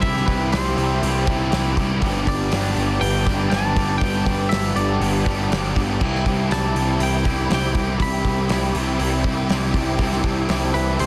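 A growly, fuzz-soaked electric bass sits up front in this wistful, dreamy slice of shoegaze-tinged rock and dream pop, cut from a longer piece and moving in a straight 4/4 feel. Above it, a bright, twangy electric guitar carries the melody with clean, compressed picking dressed in spring reverb and tape echo, while a shimmering, retro pulse-width pad hums very quietly underneath with sustained, chorused chords that swell in softly and fade on a long release. Three overdriven guitars churn out the riff: a cranked stack guitar thickened by ensemble chorus, a raw garage guitar in the background with a reverse reverb haze, and a dark, lo-fi, double-tracked twin that stays very quiet. A loose indie drum kit with a fat snare, tight kick and dark cymbals drives from the front of a pumping studio room, its top end rolled off. The harmony moves from Cmaj7 to Gadd9 and back to Cmaj7, and at 6.0 seconds a very quiet, direct-recorded clean guitar slips in with bright arpeggios. 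The whole is pressed into a dense, heavily limited modern master.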